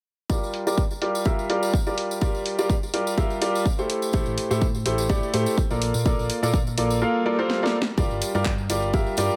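This bittersweet, soulful piano house excerpt opens at 0.3 seconds with a clear, woody upright piano riff up front, riding a punchy electronic kick and a quiet tambourine, joined at 0.5 seconds by a house kit of handclaps, hi-hat and cracking snare, all at 125 BPM in 4/4 with a light 16th-note swing. The piano carries sidechain pumping, delay and a low-pass filter, and both it and the drums move through a filter sweep that runs until 8.0 seconds, while the kit's hats, snare and room sit behind their own low-pass filters. The kick and kit share a tape-tinged, layered character, re-recorded in a large room, while the tambourine stays close and dry. At 4.1 seconds a dark, round hollow-body electric bass enters with its own sidechain pumping, moving under a Gm7, Am7 and Bbmaj7 progression in G dorian. A very quiet electronic swell and a drum fill lead into the second section at 8.0 seconds, where the harmony returns to Gm7 under a light reverb.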